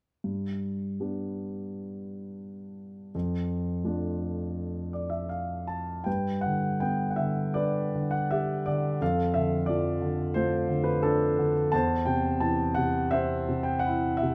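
A close, detailed recording of a concert grand piano, set in light reverb, opens this short excerpt cut from a longer classical piece. The instrument sits up front with a warm tone, deep bass and long sustain, ranging from E2 to A5 as it plays alone from 0.2 to 14.3 seconds. The mood is tender and calm, a lyrical solo in G major and 4/4, moving with rubato at roughly 78-90 BPM, tuned to A4 = 441 Hz. The harmony shifts from G to Dm/F, and a short piano fill at 4.6 seconds leads into a new section at 6.1 seconds. That second passage returns to G, passes again through Dm/F and settles on Am6/E at 11.7 seconds.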